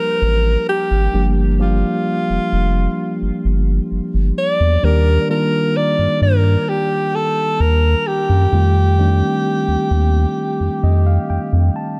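A clear, up-front alto saxophone sings a longing, jazz-style vibrato melody with tape echo over a mellow tine electric piano and a deep, round analog bass in this late-night R&B excerpt in G minor at 65 BPM, moving from Gm7 to Ebmaj7 to F9 under light reverb before the electric piano adds a fill at 10.4 seconds.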